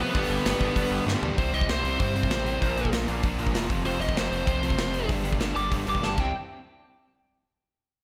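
A big arena sound with moderate hall reverb frames this rowdy, rebellious punk rock, cut from a longer piece and driven by an up-front rock drum kit with punchy kick, bright cymbals and fills near 1.1 and 6.0 seconds. A gritty, saturated synth bass and background riffs from a distorted electric guitar and a hollow-bodied semi-hollow guitar, both touched with slapback echo, support a biting lead guitar in overdrive that breaks into a solo at 1.4 seconds, carrying its own slapback echo and digital delay. A very quiet, double-tracked second distorted guitar adds a brief riff only in the opening section.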